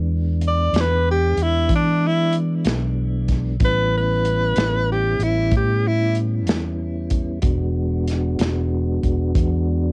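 A clear, forceful tenor saxophone leads this slow blues, playing a jazz-style solo with vibrato and scooped notes from 0.5 to 6.2 seconds. Its punchy tone with a smooth top sits up front, giving the piece a gritty, soulful mood. Beneath it, a fingered electric bass with a round, amped sound and an acoustic soul drum kit, dark and tight in the kick with a rolled-off top and a small-room feel, carry a straight 12/8 pulse at 63 BPM. A soft, flute-like tonewheel organ sits further back, holding sustained chords through a fast rotary speaker as the harmony moves from E7 to A7 and back to E7. The drums and organ carry a cassette tape character, and the whole is a home recording with light reverb, cut from a longer piece.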